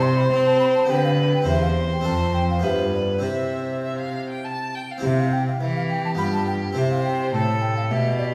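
From the first beat, a flute, violin, harpsichord and cello sound together in a short cut from a longer baroque-style sonata movement in C major. The mood is solemn and introspective, moving in an unhurried triple metre at 103 BPM with a gently flexible, rubato feel. The airy, hollow flute carries the melody with tongued notes and vibrato, while one bowed violin, clear and smooth with an even vibrato, sits up front on a second line beneath it. A single French-style harpsichord with a round, plucked tone fills in the accompaniment, and one close, bowed cello with a rich, focused sound anchors the bass. The harmony centres on C and its dominant, returning home around 3.2 seconds and again near 6.8, with a new passage beginning at 5.0 seconds. A reverberant recital-hall acoustic places the listener further back in the room, and the flute falls away at 8.2 seconds just before the others end.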